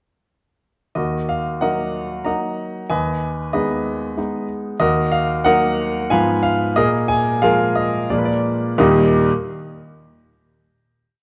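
Elegant yet restless, this short classical-period piano sonatina in a flexible, rubato triple metre sets a clear, intimate grand piano up front, its polished tune carried over bass and chords on the beats with audible action noise and long sustain, from 1.0 to 9.3 seconds, heard through moderate recital hall reverb on worn, warbling old cassette tape with a drifting pitch, before closing on a major final chord at 8.8 seconds.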